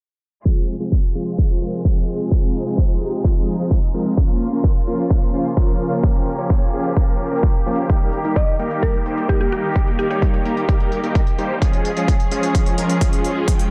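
Festival progressive house with a euphoric, powerful character, cut from a longer piece and built on a steady 4/4 pulse. A huge, detuned sawtooth supersaw riff sits up front, bright and lush with phaser, delay and sidechain pumping, while a muted string section plays sustained, veiled chords beneath it under a filter sweep that runs throughout. A punchy, layered electronic kick drives the whole passage, and crisp, tape-touched hi-hats join at 7.9 seconds. At 8.4 seconds a woody, round FM pluck adds a brief mallet-like melody with chorus and delay, ending at 10.2 seconds. The harmony moves through F minor, B-flat minor, E-flat and D-flat, set in a light digital reverb.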